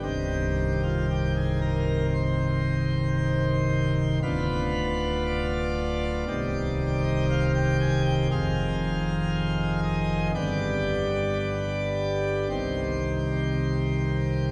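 Classical chorale-style music for solo pipe organ, this excerpt is dark and solemn, moving in a slow 4/4 with uneven, rubato beats that give it a breathing, unhurried feel. The organ plays a full plenum registration with mixtures and a baroque voicing, producing a brilliant tone with audible chiff at the start of notes. Its range stretches from deep pedal notes at C1 up to Ab5, and the instrument sits up front in the sound even as the listener seems placed further back in the room. A wet church reverb with a 3.9-second decay lets each chord ring into the space. The harmony moves from Cm through Bdim/D, back to Cm, then to Fm7 and G before settling on Cm at 12.5 seconds, near the close of this 14.5-second fragment cut from a longer piece.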